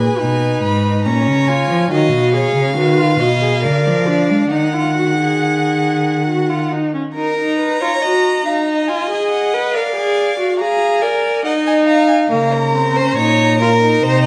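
A warm first violin carries the melody from the opening over a second violin and viola that sound rich and distant with soft attacks, every part bowed with vibrato and expressive portamento, while an up-front cello bass drops out at 6.7 seconds and returns at 12.3 seconds in this driving, serious baroque-style fugue for string quartet in 3/4, set in the moderate reverb of a scoring stage.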